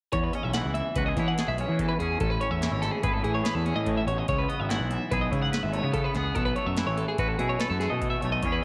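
Playful and bright, this math rock and midwest emo excerpt moves in 5/4 over an E6, Amaj7, C#m7 and B7sus4 progression, with a twangy, clean electric guitar playing accompaniment and a bright twelve-string electric guitar sitting up front with arpeggios colored by harmonic tremolo and slapback echo. Underneath, a fuzzy picked electric bass, overdriven and direct, carries the low end, while a booming analog drum machine supplies a deep kick, crisp snare and metallic hats, re-recorded in a large room. Light reverb, digital ambience and tape saturation give the mix a cohesive sheen.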